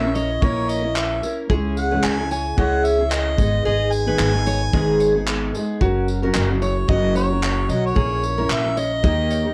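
A mellow, distant-sounding harmonica carries the melody up front in this tender, wistful acoustic pop excerpt, set in G# minor at 111 BPM in 4/4 with a light swing on the 16th notes. Beneath it, a double-tracked fingerpicked steel-string guitar gives a full-bodied dreadnought accompaniment, while a pizzicato upright bass with gut strings adds a woody, thumpy low end. In the background, a bright nylon-string guitar plays fingerpicked arpeggios, its fresh strings catching the odd finger squeak. A cloth-damped drum kit with a tight kick, handclaps and tambourine provides a thuddy, rolled-off beat from a small room. The harmony moves from A#dim through C#m, G#m and F#, then back to A#dim before landing on D#, while light reverb and the worn, warbling pitch drift of old cassette tape give the recording an aged tint.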